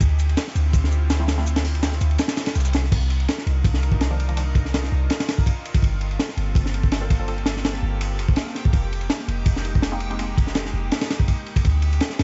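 Dark and frenetic, this drum and bass cut with a jungle edge runs on a lightly swung breakbeat and never lets up across its 12.2 seconds. A crunchy acoustic breakbeat kit sits up front, its punchy kick, high-tuned snare and dark crash and ride cymbals sounding saturated and gritty with a rolled-off top. A deep, boomy 808-style bass with a noise layer and fast, decaying notes shares the foreground, while a lush, thick sawtooth pad holds sustained, detuned unison chords beneath, thickened with chorus as the harmony moves from Dm11 through Cm11, Gm11 and Fm11. For the opening 2.8 seconds a dusty, overdriven sampler-style kit of hi-hat, shaker and snare ticks away in the background. Muted, filtered dub chord stabs with phaser and dub echo flick in briefly every few seconds, first at 1.2 seconds and again at 4.1, 7.0 and 9.9 seconds. From 5.6 seconds a reversed, granular texture swells in the background, bright and dreamy with its own reverb. 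The whole mix carries a small room ambience and a veil of vinyl crackle, its highs shaved off for a lo-fi cast.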